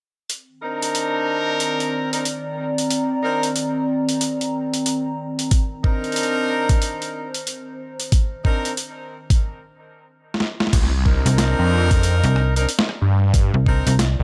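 A swaggering, gritty glitch hop excerpt opens on an overdriven, compressed boom bap sampler-style drum kit with a high-tuned snare, rim clicks, hi-hat and crash. It is soon joined by bright, jazz-style horn stabs carrying light vibrato and dub echo, and by a warbling, nostalgic tape-like pad with chorus and sidechain pumping. A knocking electronic kick arrives at 5.5 s, and after a break and drum fill, the second section brings in a swirling, detuned phased saw bass at 10.7 s, followed at 11.3 s by a snappy slap-like FM bass with a metallic attack, all over a swung groove in a moderate plate reverb.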